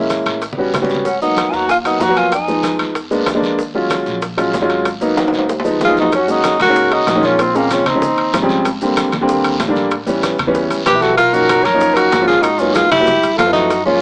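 Afro-Cuban jazz at a fiery, sophisticated 190 BPM, this excerpt sets an up-front woody upright piano and pizzicato upright bass under ringing metal-shell timbales, damped thick-skinned congas, tight high-tuned bongos, raspy guiro and grainy maracas, while a present vibrato tenor saxophone carries the melody with a breathy, straight-toned silver flute adding a second line in phrases at 1.1, 5.8 and 10.9 seconds, moving through rich chords like Abm9, Gb69 and Bmaj9#11, all heard through a worn, warbling cassette-tape haze with small-speaker colour and light reverb.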